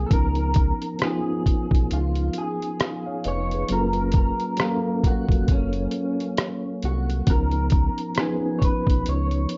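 A pitched-down, sampler-style drum kit sits up front in this nostalgic, cosy lo-fi hip hop excerpt, entering at 0.1 s with a thumpy, muffled kick, hi-hat and rim click, all compressed and tape-tinged over a swung sixteenth-note feel. Beneath it, a round analog bass blends sawtooth and sine tones into a deep, dark, sustained low end with a fast attack, also placed up front. A mellow tine electric piano carries the accompaniment, its clean sound heard as if through built-in speakers and softened by cassette tape, a low-pass filter and plate reverb as the harmony moves from C#13 to F#maj7 and back. On top, a picked electric guitar at the edge of break-up plays the melody between C#4 and C#5, compressed and slightly gritty, with ensemble chorus, a low-pass filter and plate reverb. The whole recording has a worn, warbling old-tape character with pitch drift, a moderate studio reverb, and a top end that rolls off above 7.6 kHz.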